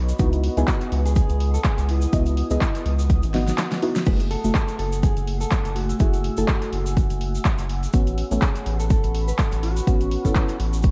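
Gritty, vinyl-crackled and lightly reverberant, this moody late-night deep house excerpt rides a punchy, tape-warmed kick and a fat, overdriven snare with claps, hi-hat, crash and a grainy shaker under a round, nasal analog bass, soft filter-plucked chord stabs trailing diffuse delay, a detuned sawtooth pad in the background and a clean, fingered electric guitar melody from 0.7 seconds, all swaying through C#m11, F#m9 and A69 with a drum fill at 3.3 seconds.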